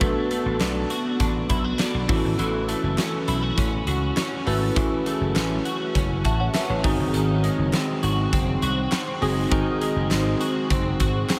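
Uplifting and glossy, this 1980s-style pop excerpt sets a picked, compressed twelve-string electric guitar riff with ensemble chorus and tape echo up front over a bell-like tine electric piano shimmering with analog chorus, a punchy vintage slap bass, a big rock drum kit with a fat snare and airy polish, and crisp group handclaps that enter at 0.6 seconds barely audible, inside a dreamy mix soaked in huge ambient reverb.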